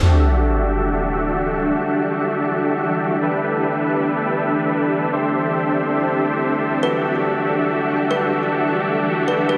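Dreamy and lush, this free-time future bass fragment in E minor opens with an up-front sub drop impact under a huge, detuned supersaw riff filtered through a low-pass and dub echo, while a dark, shimmering granular pad sustains chords from Em11 through A9sus4 and D9sus4 in a moderate digital room, and a woody, ringing kalimba with delay slips in from the background at 6.8 seconds.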